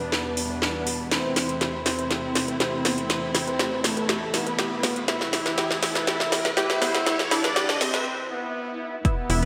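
Straight 4/4 house drums with a cracking snare and metallic hats drive this dark, hypnotic melodic techno build-up, the kit filling until a break at 8.1 seconds, when the tense, bowed-like drone also falls away. Over pumping, vibrato-rich dark chamber strings and a tight, detuned sequenced arpeggio, a fat sawtooth analog lead carries the melody with lush chorus, digital delay and sidechain pumping, shadowed by a very quiet airy, dreamy second line, while filter sweeps move through the lead and arpeggio and a background riser and swell builds. A punchy electronic kick lands at 9.0 seconds and a funky, plucky analog bass follows, the whole mix bathed in a lush hall reverb with a bright 1980s-style digital sheen.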